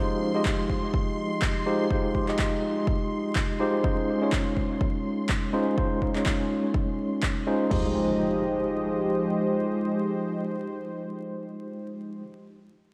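A dark, detuned analog pad, a worn, slightly out-of-tune tine electric piano playing filtered, delayed stabs up front, and a shimmering, bright string-machine violin texture open this deep, moody deep house passage in F minor at 124 BPM, all three pumping to the sidechain, before a punchy analog drum machine with kick, toms and crash joins layered electronic handclaps at 0.5 seconds with a swung 16th-note feel, and after the drums drop out at 7.8 seconds a distant electronic impact rings on under the pad and piano, the whole mix soaked in echo-chamber reverb and vinyl crackle.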